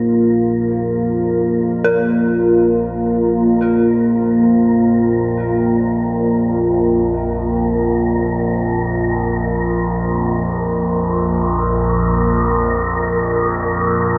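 In free time, this dark ambient drone unfolds as a vast, ominous excerpt cut from a longer piece, resting on a Bb5 chord. Up front sits a deep, moody pad of detuned sawtooth and sine layers with a sub octave, holding sustained chords with a slow attack and long release, softened by chorus and reverb. Beneath it, a resonant drone in the low register sweeps through moving overtones, colored by chorus, reverb and phaser as it fades in across the full 14.2 seconds. An eerie, inharmonic FM bell, detuned and quieter, traces arpeggios with a fast attack and decaying tones, carried by chorus and analog delay. A faint, breathy noise layer tuned to Bb4 drifts like wind, also fading in throughout, and the whole mix is soaked in a lush hall reverb that gives it a dreamy, cavernous depth.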